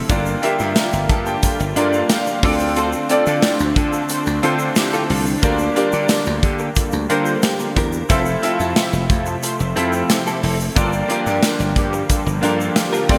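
A clear, up-front concert grand piano with lush chorus carries this glossy, uplifting 1980s-style pop excerpt, adding a fill from 0.8 to 2.8 seconds over punchy slap bass, a polished drum kit with tight kick, tambourine and gated reverb, a bold brassy analog pad, round detuned synth brass stabs with phaser, a clean direct-recorded electric guitar riff with ensemble chorus and delay, and a grainy tube shaker, all moving through Gm7, Dm7, Bb6/D and Fmaj7 in a bright digital production bathed in lush hall reverb.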